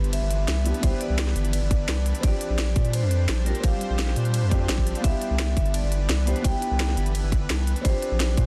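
Lush and dreamy, this short cut from a longer liquid drum and bass piece moves at 171 BPM in a straight 4/4, centred on C major and swaying between Cmaj9 and Bb69 chords. A close-miked vibraphone played with medium mallets and its motor off carries the melody, its metallic, ringing tone treated with digital delay, while a felt-muted upright piano supplies soft, intimate accompaniment with audible action noise and a dub echo. Behind them a shimmering ambient pad holds sustained chords in the background, ethereal and detuned with an octave-up shimmer, chorus, its own reverb and sidechain pumping. A deep, saturated sine sub bass sits up front with fast attack and thick sustain, and the layered drum kit brings a cracking snare, crisp hats and ride cymbal. A tight electronic kick joins at 0.8 seconds and stays prominent, all within a dry space and a dense, heavily limited modern master.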